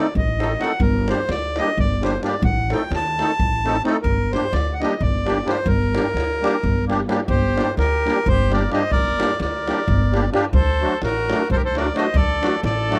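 The recording is dry and closely miked, with fine detail and little reverb, capturing Balkan wedding-band folk music cut from a longer piece. In a straight 7/8, the mood is bittersweet and restless, with chords moving between A diminished and G minor before a turn to D at 10.5 seconds. A reedy single-reed accordion carries the melody up front, its dry tuning giving a boxy small-room tone. Alongside it, also up front, a musette accordion with shimmering musette tuning supplies the accompaniment. A woody, thumpy upright bass, played pizzicato on steel strings, anchors the low end, while a tight davul sits far back in a large room. At 7.3 seconds, as the second section begins, a clear trumpet enters with a second line, punchy and roomy with light vibrato, played in a classical style and sounding distant.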